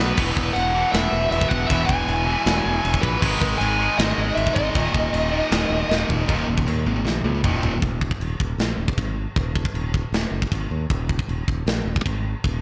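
A driving, straight 4/4 pulse at 156 BPM propels this dark, relentless heavy metal excerpt in Eb phrygian, cut from a longer piece. A picked, high-gain lead guitar carries the melody between B4 and G#5 until 6.0 seconds, while a double-tracked, distorted rhythm guitar churns out a low riff from Eb2 to B3, both guitars given a slapback echo. A bright, growly fingered electric bass sits up front and runs the full length, and a tight metal kit, its kick equally tight, with a medium-tuned snare, toms, crash and china cymbal adds fills at the start, around 6 seconds and again just before 7.8 seconds. After the rhythm guitar stops at 7.8 seconds, the closing stretch leaves bass and drums to carry on. A lush hall reverb gives the whole mix a big arena sound.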